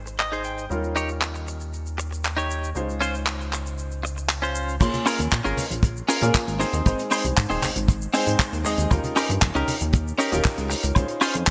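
Groovy and sleek, this short nu-disco excerpt moves at 117 BPM in a straight 4/4 in Bb dorian, with a bright 1980s-style digital sheen, light reverb and small room ambience. An intimate grand piano with audible action noise carries the accompaniment, treated with subtle chorus, digital delay and sidechain pumping, while a filter sweep runs across it through the opening 4.8 seconds. A glossy, retro synth bass built from pulse and sawtooth tones with ring modulation and a plucky filter sits up front with tube saturation, as a twangy, compressed clean electric guitar, recorded direct, plays a picked riff and opens with a brief fill. A damped 70s drum kit with dark cymbals, handclaps, hi-hat, shaker and woodblock sounds dry and up front, its hats, cymbals, snare and percussion all low-pass filtered. At 4.8 seconds the drop arrives as a dry, tight kick joins, followed at 4.9 seconds by hard-hand, low-tuned congas tucked in the background, over chords moving from Ab and Eb7 to Dbmaj7 and Bbm7.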